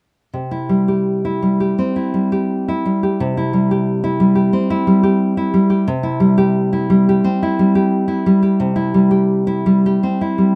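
Nostalgic and tender, this short fragment of a romantic piece for solo classical guitar sits in C major, cut from a longer work. A single nylon-string guitar carries everything, fingerpicked and up front, with a full-bodied, deep classical tone that stays within the range of C3 to G4. The tempo drifts between 81 and 92 BPM in 4/4, and the rubato feel lets the phrasing breathe freely. The guitar sounds from 0.3 to 10.6 seconds, opening on a C chord. A moderate small-room reverb lends an intimate, close ambience, and the tuning sits slightly under standard pitch at A4 = 437 Hz.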